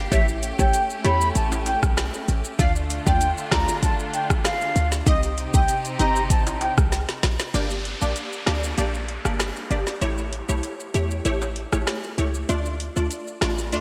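A straight 4/4 dancehall groove at 97 BPM rides an up-front afro-pop drum kit with a deep kick, woody snare, metallic hats and rim clicks, roughened by 12-bit sampler grit and gated reverb, while a punchy, tight 808-style bass and soft-handed maracas and timbales fill out this sultry, bouncy passage in G minor. Lush bowed strings hold sustained chords with sidechain pumping, a distant, reedy baroque flute with vibrato and delay carries the melody until 6.7 seconds, and a crisp, detuned wavetable stab with a filter pluck, ensemble chorus and its own sidechain pumping plays throughout. After a drum fill, the strings stop at 7.5 seconds for a break in which an electronic downlifter sounds until 12.5 seconds, the mix set in a moderate, lush hall reverb with a bright 1980s-style digital sheen.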